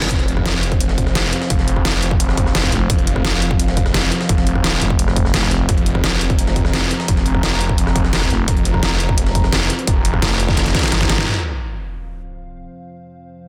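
Dark and tense, this excerpt of dark technical drum and bass at 172 BPM drives a punchy electronic kick, an up-front dubstep kit with a deep snare and a very quiet, gritty breakbeat sampler kit under a snarling, distorted sawtooth bass and a moody, chorused analog pad, while a thick FM bass with tube saturation growls in from 2.7 seconds, and a drum fill leads to an electronic impact of reverse cymbal and sub drop at 11.3 seconds that leaves the pad sustaining to the end.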